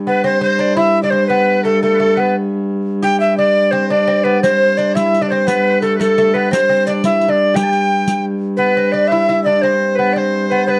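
A dark, woody hurdy-gurdy drone opens this rustic medieval dance in a straight 6/8, joined almost at once by a breathy tenor recorder carrying the melody up front with chiff and vibrato, while a delicate fingerpicked lute on gut strings and a bright, distant shawm with slapback echo add second lines. A riq with dark jingles, played with soft hands, enters at 4.4 seconds and stops at 8.2 seconds, just before the music moves into a new section at 8.6 seconds. The sound is that of a dry, close 1970s-style studio with light reverb, giving this fragment of a longer piece an ancient character.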